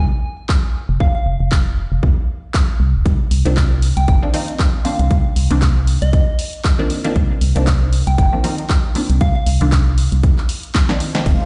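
This recording sounds as if it were played over a big sound system in a bare stone room, with light digital ambience and a subdued top end. The moody deep house groove swings gently in 4/4, and from the start it is driven by a dark FM bass with a hollow, organ-like, percussive bite that sits up front and pumps with sidechain. A pure, gentle synth bell carries the melody until 9.4 seconds, coloured by chorus, phaser and delay. An overdriven, punchy electronic kick sits up front, anchoring a layered kit of handclaps, hi-hat and snare heard in a smaller room. From 3.5 seconds a muted, detuned sawtooth chord stab adds short filtered plucks washed in phaser and dub echo, and after a drum fill a soft, flute-like pad and a faint brushed ride cymbal surface just before the cut.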